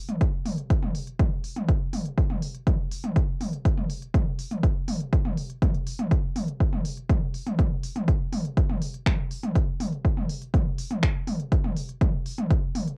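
Lightly reverberant and captured on home cassette, this short techno cut from a longer piece feels driving yet melancholic in straight 4/4, with a punchy, up-front electronic kick drum and a layered electronic drum kit of finger snaps, smooth hi-hats and toms, both re-recorded in a small room.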